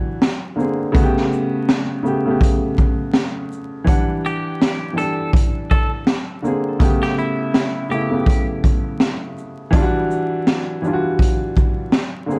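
A swung 82 BPM groove in 4/4 comes from a raw garage drum kit entering at 0.2 s, its punchy kick, high-tuned snare, hi-hat and shaker sounding gritty and saturated in a small, pumping room, setting a melancholic, nostalgic lo-fi hip hop mood in E dorian. An up-front upright piano with a woody tone and audible action noise, dulled by cassette tape and a low-pass filter, carries the accompaniment over chords moving through A#9, A9 and Em9, while a clean, picked semi-hollow electric guitar plays a melody from 4.3 to 8.5 s through spring reverb. Light reverb, vinyl crackle and a dark, warm production give this short cut from a longer piece its intimate character.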